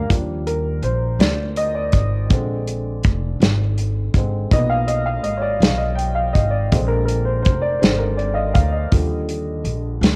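A woody upright piano with a cassette-tape tint and a thumpy pizzicato upright bass open this reverent, uplifting slow gospel excerpt at 54 BPM in 6/8, joined at 0.1 seconds by an airy, polished country drum kit with a tight kick and medium-tuned snare, while the piano takes a solo over Ebmaj7, Bb7 and Abm6 changes in Eb major, tuned to A4 = 436 Hz, in a home cassette recording with light reverb and small-room ambience.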